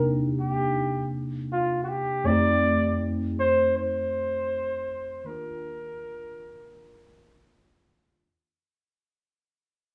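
A breathy, mellow flugelhorn plays a jazz-style solo melody with light vibrato and scooped notes over a worn, slightly out-of-tune tine electric piano heard through a combo amp and phaser, both up front in this smooth, romantic, swung reggae fragment that moves from Cm7 through F7 to Ebmaj7, bathed in wet large-studio reverb with a live small-room feel, the horn dropping out at 7.5 seconds as the passage fades away.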